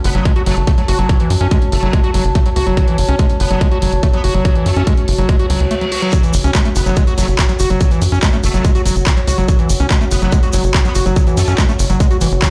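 Heard through a big sound system in a bare room with large studio reverb, this intense, psychedelic 143 BPM trance excerpt in F# minor drives on a tight, nasal sequencer bass and an up-front electronic kick, with a squelchy, resonant acid bass riff, an overdriven techno kit of handclaps and hi-hat, a warbling lo-fi pad, a metallic wobble bass in the background, a reverse cymbal leading into a brief break at 5.7 seconds, and a grainy tube shaker entering at 6.1 seconds.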